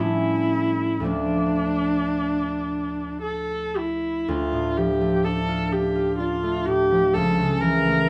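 A bowed viola and a fingerpicked concert harp begin together on an A7 chord before settling onto D minor, in this solemn, melancholic cut from a longer romantic classical duo. The viola carries the melody between D4 and Bb4 with a rich, expressive tone, soft attacks, vibrato and portamento, its single voice sounding somewhat distant even as it sits up front. Beneath it, the harp's ringing accompaniment spans C#2 to F4, its acoustic sound warm and close. The music moves in a rubato 3/4 at roughly 55-65 BPM, tuned to A4 = 439 Hz, and passes into a second section at 4.3 s before an A/C# chord arrives at 7.1 s. Light reverb lends the room a sense of space.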